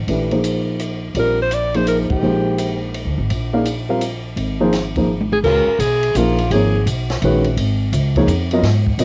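Captured as a home cassette recording with studio reverb, this open, searching modal jazz piece in three, cut from a longer work, sets woody, thumpy pizzicato upright bass and a dark, mellow baby grand piano up front beside a dry cocktail drum kit with dark cymbals, a high-tuned snare and a punchy kick, while a breathy alto saxophone with subtone, vibrato and scooped notes plays two brief solo phrases, the band hitting an accent at 2.0 seconds and a drum fill at 5.1 seconds leading into the second section.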